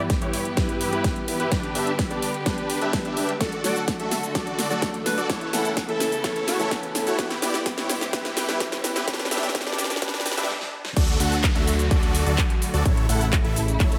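A straight 4/4 pulse at 127 BPM drives this uplifting, anthemic festival progressive house build in D major, where a punchy, up-front electronic kick and a big-room kit with a huge snare, metallic hats, crash, snaps, claps and shaker sit under bright, detuned supersaw chords carrying subtle chorus, delay and a low-pass filter, a background grand piano and lush bowed strings pumping with the sidechain, a very quiet riser and downlifter, and a distant, roomy alto saxophone melody with delay entering at 3.4 s, until a brief stop gives way at 11.0 s to a drop anchored by a fat, thick analog bass.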